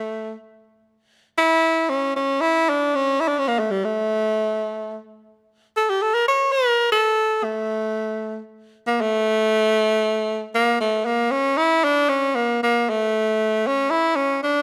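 Persian music in 6/8 with a festive, passionate mood, carried by a lone tenor saxophone playing a pop-style line up front with a clear tone and light vibrato. The phrasing moves into a new section at 10.5 seconds, and this short passage is cut from a longer piece. Close, detailed microphones and light reverb keep the saxophone intimate and present.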